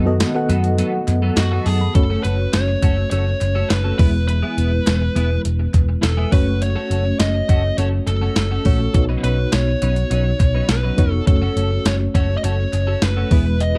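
A straight 4/4 groove from a thumpy, tape-warm 12-bit drum machine with kick, snare, hi-hat and tambourine, plus very quiet crisp group handclaps, drives this dramatic, urgent excerpt of 1980s-style pop, with a round, dark hollow-body picked bass sitting up front. A full-bodied FM electric piano with tremolo and a twangy, compressed twelve-string electric guitar riff run throughout, while a shimmering chorused pulse-width pad holds sustained chords only until 1.9 seconds. From 1.4 seconds a distorted fuzz lead guitar carries the melody through tape echo and plate reverb over chords moving from F#m through E and Badd9, all inside a dark, warm production.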